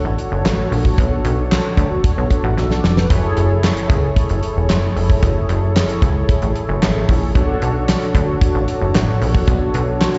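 A plucky analog bass sits up front in this slick, late-night early-eighties boogie funk excerpt at 113 BPM in a straight 4/4. The punchy bass blends sawtooth, pulse-wave and triangle tones with ring modulation and a fast-attack filter pluck that decays. Mellow synth brass holds the harmony with detuned, brassy sawtooth chords that stay round and dark, shaped by a filter sweep, ring modulation, chorus and slapback echo. A damped 70s acoustic kit plays dry hi-hat, handclaps, a tight kick and a fat snare, with a fill at 2.6 s. The harmony moves from Bm9 to F#m9 at 3.1 s and returns to Bm9 at 7.4 s. The sound is that of a live gig heard through the venue's PA, with small-room ambience and recital-hall reverb, and a top end that stops at 7.7 kHz.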